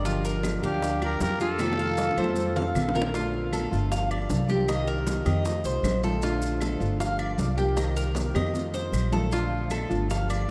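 Latin Cuban son in a relaxed, danceable groove, where an up-front metallic tres with slapback echo and a woody pizzicato upright bass sit over a fingerpicked nylon-string guitar, ringing congas, tight high bongos, grainy maracas and distant claves, while a small second guitar line enters at 0.6 seconds and a raspy, growling trumpet at 0.7 seconds, both appearing briefly until 2.7 seconds, all bathed in a vast cathedral reverb.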